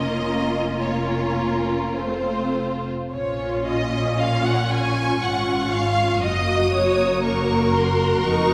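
Classical slow romantic movement for string orchestra in 3/4 with a rubato feel, melancholic and solemn, cut from a longer piece. Violins carry a focused, vibrato-laden melody while a second violin line sits up front with a soft attack, over violas with expressive portamento, cellos in the background and woody double basses. The lush ensemble blooms in a wet concert hall reverb, moving into a new section at 3.1 s.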